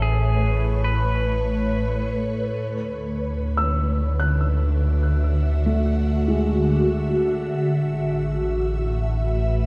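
A lush hall reverb with a long three-second tail bathes this short ambient passage, cut from a longer piece, in a serene glow. It moves at an unhurried 72 BPM in 3/4 in D lydian. An ethereal, airy pad sits up front, its slow-attack chords thickened by ensemble chorus, phaser and a detuned sawtooth shimmer, while a round, deep analog bass anchors the low end throughout. A clean, warm pedal steel guitar opens with a brief, compressed melody touched with delay and volume swells, ending by 2.1 seconds. At 3.6 seconds a felt-muted upright piano enters with soft, intimate arpeggios, its mellow, dark tone echoed by delay until 8.9 seconds. Beneath it all the harmony drifts from Aadd9 to Dadd9 and settles on Asus2.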